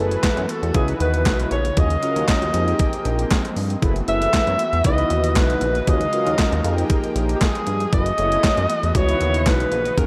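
An excerpt of early-eighties boogie funk opens on a chorused synth bass, mellow synth brass and a brassy analog pad sounding together, moving at 117 BPM in a straight 4/4 with a funky, slick mood. A clean 12-bit digital drum machine joins at 0.1 s with a thumpy kick, medium-tuned snare, hi-hat and handclaps, its sampler-style hits tape-warm, roomy from a large space and placed up front beside the glossy, plucky bass. The synth brass is round, dark and warbling with detuned sawtooth tones, filter sweeps and vibrato, while the pad sits in the background, bold and bright, holding sustained chords through a cycle of minor eleventh chords from Gbm11 through Dbm11, Ebm11 and Fm11. At 0.2 s an alto saxophone takes the solo melody in a jazz style, with soft attacks, scooped notes and vibrato, carrying tape echo and sounding distant and roomy even though it sits up front. A plate reverb soaks the whole mix, giving it a dreamy sheen.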